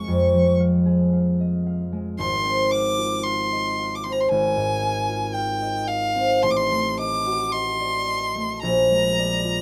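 A rubato 4/4 pulse around 56 BPM carries this serene, warm romantic classical duo, in which a clear, bowed violin with vibrato sings a smooth, even melody above a bright, ringing concert harp whose thumb-plucked accompaniment spans a broad range. Both instruments sit up front under close, detailed microphones with light reverb, while the harmony moves from Db/F through Fm/Ab and Adim7 to Bb7 across this 9.6-second passage cut from a longer piece.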